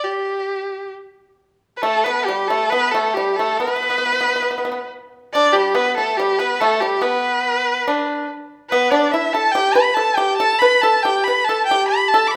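The rhythm flows freely in rubato around 70 BPM in 4/4, giving this Chinese traditional chamber piece a pastoral, graceful mood. A single bowed erhu opens alone, carrying the melody between G4 and D6 with a clear, focused tone, sung through vibrato and gliding portamento. At 1.8 seconds the pipa enters as a second line, played with fingerpicks between G3 and B4, its dry, percussive attack sitting up front beside the erhu. Both instruments sit up front, though the erhu carries a somewhat distant quality. They are tuned to A4 = 439 Hz, in a moderate recital-hall reverb that lends the space a gentle bloom. The passage is cut from a longer piece, with the erhu closing out at 12.4 seconds.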